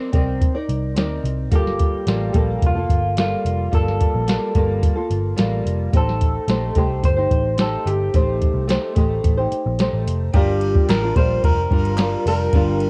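Hazy and lonely, this fragment of a bedroom-pop piece in G minor moves at 109 BPM, with a fingerpicked flamenco guitar up front, wrapped in analog chorus, warbly pitch drift and cassette tape, over a dark, foam-muted vintage electric bass and an overdriven, up-front rhythm box with a deep kick, crisp snare and metallic hats. From 1.6 seconds an electric guitar through a small old amp carries a picked, slightly broken-up melody coloured by subtle chorus and analog delay. Near the close, a mellow, very quiet string machine with sawtooth violas enters at 10.4 seconds, and distant group handclaps appear briefly at 10.9 seconds, all inside the light reverb of a home cassette recording.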